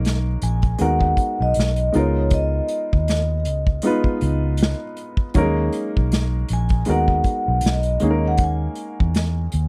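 A dry, close 1970s-style studio sound frames this soulful, smooth neo-soul R&B fragment at 79 BPM with a gentle 16th-note swing, where a woody upright piano with audible action noise comps through D#7sus4, G#m9 and C#13 chords, a dark, foam-muted fingered electric bass sits up front, an unplugged drum kit with bundle sticks and a punchy kick keeps time, and from 0.4 seconds a mellow, ringing soft-mallet vibraphone with slow motor vibrato carries the melody.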